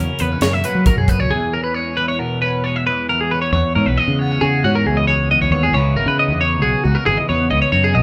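Wistful and bright, this cut from a longer math rock and midwest emo piece in 5/4 layers two clean, twangy twelve-string electric guitars (one carrying phased accompaniment, the other high picked arpeggios) over a growling, overdriven fingered bass, while a crisp fusion kit with a high-tuned snare and tight kick plays only from 0.2 to 1.2 s before a break at 1.3 s, the band playing live together in a large studio room with moderate reverb.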